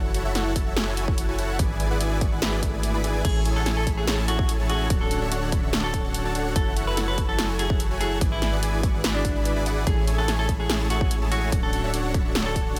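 A half-time future bass groove built on a punchy layered electronic kick and a big-room kit of crash, hi-hat and punchy snare carries this euphoric, bright clip, where a huge detuned supersaw riff and a deep, mellow 808-style bass both pump against the sidechain over a very quiet breathy pad, a background swell arrives at 2.7 seconds, and from 3.2 seconds a dark, clean picked electric guitar melody enters with sidechain pumping and dub echo, all in a dry mix that cycles through F#m7, E7/G#, Amaj7 and Dmaj7.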